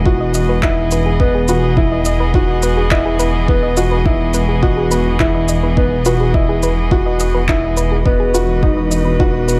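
Piano and strings electronica, tender and luminous, cut from a longer piece, where a clear, woody upright piano with a worn, slightly detuned tone plays a riff through delay. A veiled, con sordino string quartet holds sustained chords and a deep, rumbling detuned saw bass sits up front, both pumping with sidechain alongside soft, round pluck arpeggios treated with chorus and delay. An electronic kick drum and layered electronic shaker and handclaps bring a tape-warm, produced feel in studio ambience, all under light reverb in a dark production.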